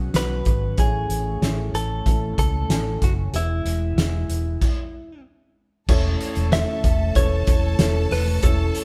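A dark, woody upright piano, a faint breathy pad and a round, foam-muted electric bass open this hopeful piano-driven pop passage, joined by a loose indie drum kit with a fat snare and punchy kick up front, and a clean, direct-recorded electric guitar carrying the melody. After a stop from 4.6 to 5.9 seconds, a bright, lush symphonic violin section enters at 5.9 seconds with a vibrato-rich second line. The band sounds as if playing live together in a moderate stone room.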